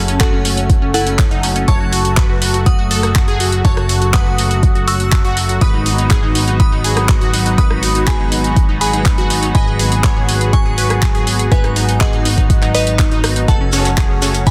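An overdriven, deep electronic kick sits up front in this bittersweet, expansive progressive house excerpt at 122 BPM, joined by a gritty deep house kit of handclaps, hi-hat and rim click, a punchy, funky analog bass pumping under the sidechain, a glassy FM bell melody trailing dub echo, a bright detuned unison pluck running phased arpeggios, and a thick, warbling pad with vintage 12-bit grit holding chords that move from F#m to G#m7, before a grainy shekere slips in at 13.5 seconds and a brief, punchy supersaw stab enters at 13.7 seconds.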